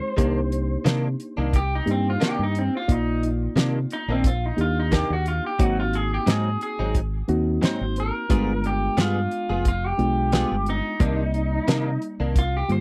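Straight-eighth soul blues with a smoky, brooding mood, cut from a longer piece, with an electric guitar through a small old amp carrying a twangy, slightly broken-up melody while a worn, reedy electric piano with a touch of detuning comps beneath. A clean, direct-recorded electric guitar with ensemble chorus adds bright stabs, a round, punchy fingered bass sits up front, and a damped 70s drum kit of hi-hat, tight kick and fat snare drives the groove. The harmony moves from Cm9 through Ab7 and G7b9 back to Cm9, captured as a dry, close 1970s-style studio recording with light reverb.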